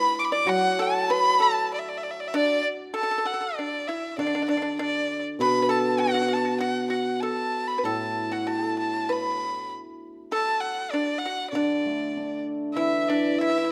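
The piece moves in a rubato 2/4 at 98 BPM, a festive, graceful stretch of Chinese traditional chamber music in D gong mode, cut from a longer work. A clear erhu carries the melody up front, its biting, nasal tone marked by light vibrato, portamento and an airy bow. A large dizi with a buzzing membrane adds a soft, straight-toned second line in the background, sounding from 0.0 to 2.6 seconds and returning at 12.8 seconds. A dry, percussive pipa played with fingerpicks supplies another second line throughout. From 0.5 seconds a hammered dulcimer rings out up front as accompaniment, its shimmering notes set low beneath the others. Close, detailed microphones catch the players in a moderate recital hall reverb.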